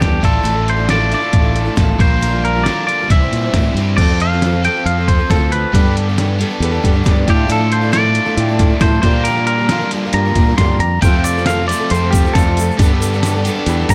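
A straight 4/4 groove comes from a compressed, pitched-down, sampler-style drum kit with a thumpy kick, a muffled medium-tuned snare, hi-hat and crash cymbal, sitting up front with a tape-warm grit beneath this jangly, hopeful slice of folk rock and heartland rock. A fingered electric bass, direct and up front, holds down the low end. In the background, a picked, plugged-in twelve-string acoustic guitar adds a shimmering, octave-doubled jangle, while a bright, double-tracked overdriven electric guitar drives a riff. A twangy, clean, compressed electric guitar carries the melody. A clean electric guitar solo begins at 4.0 seconds, where a clear concert grand piano also enters quietly, intimate enough that its action noise can be heard beneath a long natural sustain. A grainy tube shaker joins at 11.0 seconds, and light reverb gives the whole cut a touch of space over chords that cycle through Dmadd9/A, Bb6, F and Gadd9.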